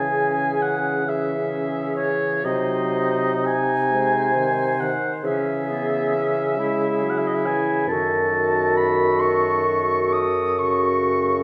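A slow, rubato 12/8 pulse at 45 BPM, counted in dotted quarters, carries this melancholic, elegiac romantic movement for wind quintet in C# minor. The concert flute holds the melody with a pure, straight tone, tongued and set back in the background, while a mellow oboe with light vibrato sings a roomy second line above it. A bright clarinet with a soft attack and a vintage colour shares the accompaniment with a warm, present French horn. Beneath them, the bassoon anchors the bass, sitting up front. The five instruments sound together from 0.0 to 11.4 s over the harmony C#m, G#7/B#, C#m and F#m. A wet scoring-stage reverb gives the passage the spacious air of a church or concert hall, and it is cut from a longer piece.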